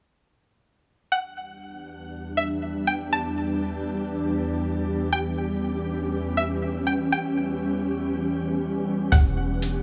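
Melancholic and spacious, this atmospheric cloud-rap fragment moves with a half-time hip hop feel over a single Em7 chord. A twangy, string-like resonator pluck carries the melody from 1.1 seconds, its bright sawtooth tone touched by a noise layer, a filter sweep, chorus and tape echo. At 1.7 seconds an ethereal pad spreads sustained chords beneath it, airy and full-bodied with detuned unison voices, wave-folding, ensemble chorus and its own reverb, breathing with sidechain pumping. Only at 9.1 seconds do a clean, boomy 808-style bass and a gritty, pitched-down trip hop sampler-style kit arrive, the kit's thumpy kick and hi-hat sitting up front. A shimmer reverb with a 6.4-second tail and a small-room ambience lend the recording its hazy depth.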